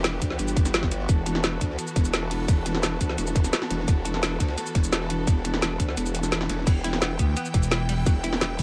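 This excerpt of dark, technical drum and bass feels aggressive and tense, built on a single E minor chord. A bright, close string section holds intense bowed chords with vibrato, pumping against the sidechain, while a growling, wobbling bass driven through overdrive, chorus and a formant filter sits up front beneath it. The drums stack a tight, layered electronic kick, which drops out between 6.0 and 6.7 seconds, with a produced kit of woody snare, metallic hats, crash and shaker, and a very quiet, gritty breakbeat kit with dark cymbals and a rolled-off top underneath. At 6.7 seconds a clean, picked electric guitar slips in the background with arpeggios colored by analog chorus, tape echo and sidechain pumping. A thick FM bass with a fast attack joins at 7.2 seconds, adding another growling layer as the section carries on. The sound is dry, with little reverb around it.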